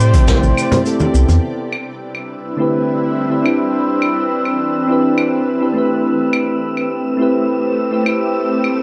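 A bucket-muted trumpet breathes a veiled, whispered phrase on C5 with tape echo before ending at 0.9 seconds, as mellow electric-piano-like synth keys, a shimmering, ethereal pad, distant brushed drums, ringing congas and a deep, round sub bass that drops out at 1.4 seconds settle into a wistful, relaxed sunset chillout groove at 104 BPM, moving from Am9 through D13sus4 and Cmaj9, with an airy, wind-like noise texture drifting in at 2.3 seconds, all carrying a cassette-tape grain in a small room.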